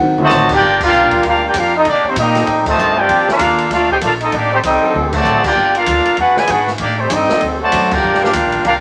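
Swinging at 194 BPM in G minor, this dramatic big band jazz excerpt opens with a brief, mellow upright piano accompaniment and a drum fill, then a tight, vintage trumpet section carries the melody over a clear trombone section's second line, with a background trombone ensemble holding sustained chords from 1.1 seconds, woody pizzicato upright bass, and an open jazz drum kit with dark cymbals and a boomy kick, punctuated by band accents in a wet studio ambience.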